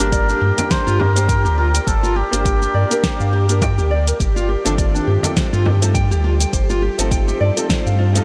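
Organic downtempo in G minor at 103 BPM, an earthy, meditative fragment of a longer piece with a gentle 16th-note swing, moving from Gm to F7/G inside a huge ambient reverb that leaves the mix dreamy and soaked. A veiled, cup-muted trumpet sings a soft jazz-style melody with scooped notes through tape echo until 3.9 s, over fingerpicked nylon-string guitar arpeggios, a felt-muted upright piano and an ethereal, detuned pad with chorus and phaser, the piano and pad both sitting in the background and pumping with the sidechain. Underneath, a round sine sub bass sits up front beside a tape-warm deep house kit of hi-hat, shaker and fat snare, a deep electronic kick and a very quiet, close frame drum played with soft hands.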